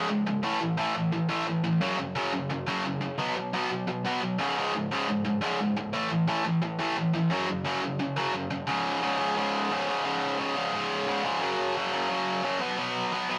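A straight, driving 4/4 pulse carries this rowdy, energetic punk fragment, cut from a longer piece, where a lone tight, bright electric guitar, picked and double-tracked, plays up front through distortion from start to finish. Its power chords run through one pattern before shifting into a new section at 8.7 seconds, and the rough rehearsal-room recording wraps the guitar in a moderate stone-room reverb.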